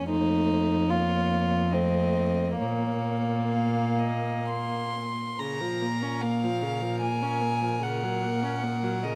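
Classical slow romantic movement for string quartet in Bb minor, serene and tender, unfolding in a rubato 3/4 at 58-76 BPM in a short passage cut from a longer piece. A first violin with a soft attack, airy bow and floating tone sings the melody above an up-front second violin with a smooth top, an intimate viola accompaniment with light vibrato, and a rich, pure cello bass, all four played sul tasto. Close, detailed microphones and a moderate scoring stage reverb frame the harmony as it sways between F7 and Bbm before settling on Gb/Bb near 7.8 seconds.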